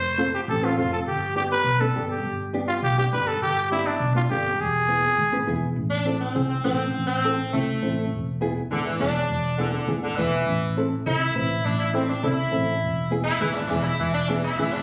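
A raspy, growling trumpet opens this fiery, passionate Latin fragment over a round, hollow-body electric bass and a small, thumb-plucked nylon-string guitar, then drops out at 5.6 s as a bright, tight saxophone section with plate reverb carries the melody from 5.9 s, the whole captured on a phone in a club-like room with compression.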